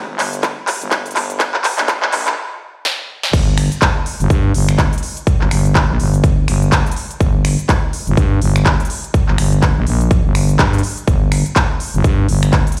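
A thick, growling FM bass opens this gritty, bouncy bass house cut at 124 BPM in G minor with a 16th-note swing, pumping under sidechain as an overdriven, punchy electronic kick and a layered big-room kit of crisp hats, punchy snare, handclaps, finger snaps and crash join almost at once for a build-up of drum fills and a filter sweep, then a brief stop from 2.4 seconds gives way to the drop at 3.3 seconds, the whole mix sounding as if played on a big sound system in a bare room with a large studio reverb.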